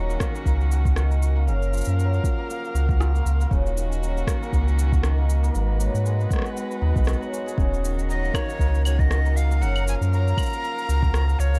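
Dark, dry production frames this delicate, wistful folktronica fragment, where a bowed string quartet holds sustained chords beneath shimmering hammered dulcimer arpeggios roughened by vintage 12-bit sampler grit and delay, a round, deep sub bass sits up front, a soft overdriven electronic kick and overdriven electronic shaker, rim click and claves carry a swung groove, and a breathy jazz flute bathed in plate reverb enters at 8.1 seconds, joined at 8.5 seconds by a very quiet flickering, grainy texture.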